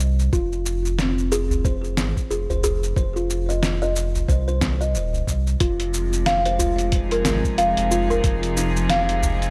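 Organic downtempo in F minor at 91 BPM, meditative and earthy, this excerpt opens on a round sine sub bass with tube saturation and sidechain pumping alongside a gritty, overdriven sampler-style kit of hi-hat, shaker and fat snare, joined at 0.3 seconds by a soft electronic kick and a mellow, woody kalimba playing arpeggios through 12-bit sampler grit and digital delay. A deep udu sits in the background from 1.5 seconds, and at 5.6 seconds a distant chamber string section enters with sustained Fm7 chords, its reedy gut-string tone carrying light vibrato and sidechain pumping. A light reverb surrounds the mix, and the swung 16ths give the groove a relaxed sway.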